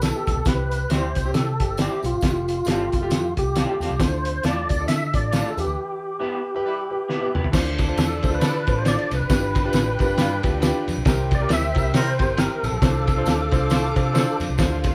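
A lightly overdriven tonewheel organ with key click and a slow rotary speaker carries the melody up front in this passionate, urgent 1960s-style soul with a swung feel, over a muffled, cloth-damped drum kit with a fat snare and dark cymbals, a round, punchy foam-muted electric bass, a clear concert grand piano, and a jingly tambourine in the background, while a bright, twangy electric guitar through a small old amp adds stabs from 0.9 s, a distant, roomy horn section enters at 6.6 s, and a veiled, lush con sordino string section joins at 7.5 s, all played live in one room.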